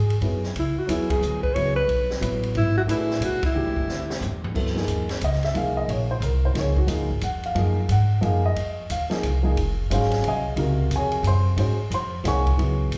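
Spiritual and intense, this modal jazz excerpt swings at 180 BPM in 3/4, shifting from C# phrygian to F phrygian at 4.5 s, as a breathy, mellow alto saxophone with subtone, vibrato and slapback echo carries the melody up front until 4.2 s, while a woody pizzicato upright bass and a warm upright piano with its own slapback echo play on beneath it, and an open jazz drum kit with dark cymbals, a high-tuned snare and a boomy kick joins the band's accents and plays a fill into the key change, the performance captured live through a club PA with reverb.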